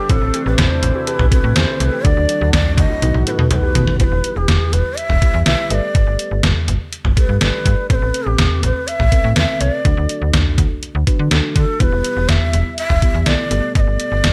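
Driving and nocturnal, this synth-pop excerpt sets a breathy, vibrato-tinged shakuhachi melody echoing over muted felt-like synth keys, a snappy slap-like FM bass and an overdriven, thumpy 8-bit drum machine sitting up front with gated reverb, while a bright, resonant sweeping pad and a warbly, lo-fi pluck playing arpeggios linger in the background until a drum fill at 3.0 seconds leads into the second section at 4.0 seconds, where they drop out.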